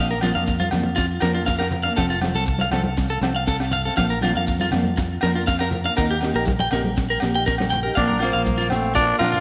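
A carefree, danceable highlife guitar band groove in Bb major at 120 BPM, in a straight 4/4, cut from a longer piece. An up-front, slightly broken-up electric guitar plays picked arpeggios through spring reverb and tape echo, over a full-bodied, fingerpicked nylon-string guitar and a dark, round, punchy fingered electric bass. From 0.2 seconds a tight, polished funk kit with a high-tuned snare drives the beat, while ringing congas and agogo bells sit in the background and grainy, mellow maracas shake along. The chords move from Bb to F, back to Bb, then Eb. At 8.0 seconds the music returns to Bb and a raspy, growling tenor saxophone takes the melody up front, with a breathy alto saxophone behind it playing a second line with scooped notes. A moderate echo chamber reverb gives the band a sense of space.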